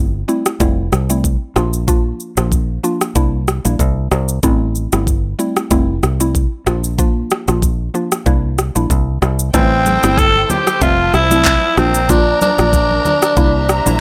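A woody, mallet-like FM synth pluck with chorus and phaser opens this breezy, sunny afrobeats excerpt in F major at 94 BPM alongside a punchy, foam-muted fingered electric bass, an electronic afro-pop kit with a knocking kick, handclaps, rim click and shaker joins at 0.3 seconds, and at 9.5 seconds a raspy, gritty tenor saxophone takes the solo up front with vibrato while a lush bowed string section glides in the background over very quiet, ringing congas.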